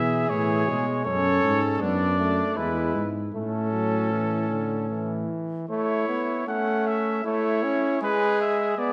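Elegant and lively, this short cut from a longer classical brass piece is an imitative canzona in a steady triple metre for a small ensemble. Two trumpets carry the upper voices, one taking the melody and the other a second line beneath it, while a clear, close-miked trombone supplies the accompaniment. The trumpets and the tuba share a mellow tone touched with light vibrato, and the tuba anchors the bass until it drops out at 5.3 s. The harmony moves through A, F#m, D/F# and E before settling back on A, and a new section begins at 5.7 s, later reaching a G#m chord. A wet scoring-stage reverb surrounds the players with a spacious bloom while the melody trumpet, trombone and tuba stay up front.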